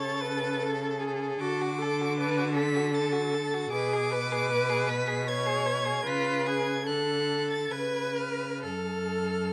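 A string quartet opens together on a melancholic, yearning slow romantic movement in triple time, its pulse pushed and pulled with rubato. The first violin carries the melody high in its range with a smooth, even tone and rich vibrato, while the second violin threads a clear second line beneath it with lighter vibrato. The viola sits close in the middle, soft in attack and expressive, sliding between notes with portamento, and it is the most present of the upper voices. Up front, the cello anchors the bass with a rich, focused sound. The harmony leans on a diminished colour and a seventh chord before settling on F#m at 8.6 seconds. A moderate stone-room reverb gives the quartet a resonant space, and the passage is cut from a longer piece.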